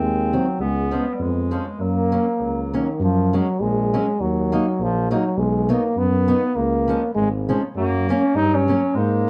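A clear, up-front euphonium carries the melody with tape echo over a mellow, smooth-topped tuba bass in this festive, jolly alpine dance band cut at 101 BPM in a swung 2/4 and F# major, while a distant, roomy clarinet adds a second line until 3.0 seconds and returns at 7.8, and a dark, boxy fingerpicked archtop guitar, with audible finger squeak, joins at 0.3 seconds, all set back in a small, wet room.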